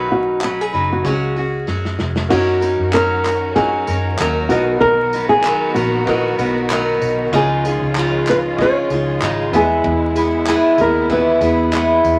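A wet, roomy sound with a layer of vinyl crackle frames this easy-going, heartfelt stretch of acoustic pop, cut from a longer piece and carried by a lightly swung groove. A dark, thumb-plucked flamenco guitar sings the melody over an up-front picked steel-string acoustic guitar, a woody upright piano tucked in the background, and a round, foam-muted electric bass. A natural country kit with a punchy kick, handclaps and tambourine comes in at 0.4 seconds and plays a fill just before a lush, distant bowed string section enters at 2.3 seconds with expressive vibrato.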